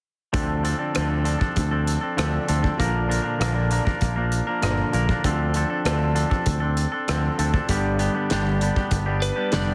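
Cool and restless, this indie rock excerpt moves at 98 BPM in a straight 4/4, set in D minor and cut from a longer piece. An up-front, twangy electric guitar plays a clean, picked riff bathed in spring reverb, while a growling fingered bass, overdriven and direct, holds the low end. A loose indie drum kit with a punchy kick, fat snare, hi-hat and rim click sits in a pumping studio room. The chords cycle through Dm7, Bb, Dm7 and G, and at 9.2 seconds a lightly driven, slightly broken-up lead guitar slips in with a brief picked melody carried by slapback echo. The whole mix has a small room ambience and a heavily compressed, radio-like sound.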